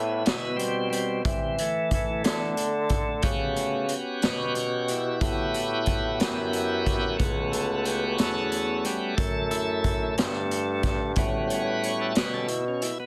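A bright, lightly overdriven tonewheel organ takes the lead in this rollicking, soulful slow blues, its full, shouting sustained chords over A13 carrying audible key click and the churn of a slow rotary speaker. Beneath it, a bassoon with vibrato holds the bass line in a classical style, sounding distant and roomy, while a raw garage drum kit enters at 0.3 seconds with a high-tuned snare, punchy kick and hi-hat, gritty and saturated in a small, pumping room with a rolled-off top. The 12/8 groove sits at 60 BPM with a straight feel in A mixolydian, and this cut from a longer piece is dry, dense and heavily limited.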